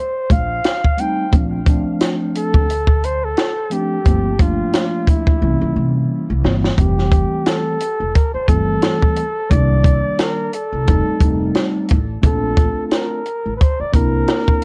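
Smooth and cool, this jazz-hop excerpt moves at 88 BPM in F major with a swung sixteenth-note feel, opening on a breathy flugelhorn melody wrapped in tape echo, its scooped notes and vibrato sitting over rich chords like F9, Bbmaj9 and C7b9. A woody, growly upright bass and a dry cocktail kit with a punchy kick and a high-tuned snare enter at 0.3 seconds, the drums up front and taking a fill from 5.4 to 6.8 seconds before the second section begins. A mellow tine electric piano, colored by cassette tape, joins at 1.0 second, and the whole piece carries the light reverb and lossy grit of a home cassette recording.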